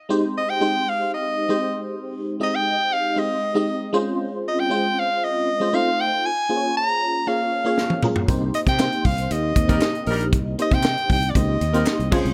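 A glassy, bell-like FM electric piano with ensemble chorus opens this upbeat, glossy jazz-funk pop excerpt in Ab major at 117 BPM, joined almost at once by a bright, present soprano saxophone melody trailed by digital delay, before a drum fill at 7.8 seconds brings in a tight funk kit with a high-tuned snare, a growly fretless bass with subtle chorus, very quiet crisp handclaps, and finally a smooth horn section with light vibrato at 9.7 seconds, all set in light reverb and small-room ambience.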